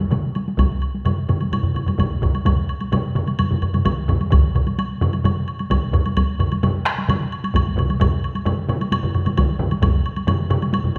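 Powerful and ceremonial, this excerpt of Japanese traditional taiko drumming moves in a straight 4/4 at 130 BPM and speeds up throughout, as a close, dry solo taiko and a woody woodblock sit against three taiko ensemble parts struck with heavy sticks, one compressed and saturated, two ringing in a live room, with the loudest group entering at 0.6 s and dropping out at 9.9 s, all carried by a recital-hall reverb.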